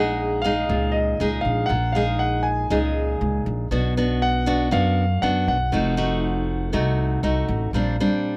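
Close, detailed microphones and light reverb frame this romantic, sunny bossa nova excerpt at 119 BPM in F# major, where a concert grand piano with long sustain carries the melody until 7.5 s over an up-front, fingerpicked nylon-string guitar with audible finger squeak and a woody, thumpy pizzicato upright bass on gut strings, as the harmony moves from F#69/A# through Bm and F7b9 to Bb69.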